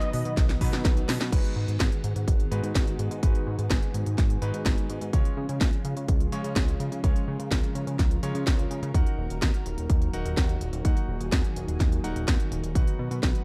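Italo disco at 126 BPM in G# dorian, this melodramatic, danceable excerpt opens with a brief thick, detuned sawtooth lead note carrying tape echo that stops at 0.8 s, over a lush, warbling unison pad with chorus in the background and clangy, vintage electric grand piano stabs. A drum fill from 0.4 s brings in a punchy, up-front electronic kick alongside the house kit's cracking snare, crisp hats and crash, while a glossy, tube-saturated pulse-wave synth bass with a filter pluck drives the groove. From 1.3 s a filter sweep runs across the piano as the chords move through G#m7, C# and D#m back to B, all in a dry, gritty hardware recording with digital ambience.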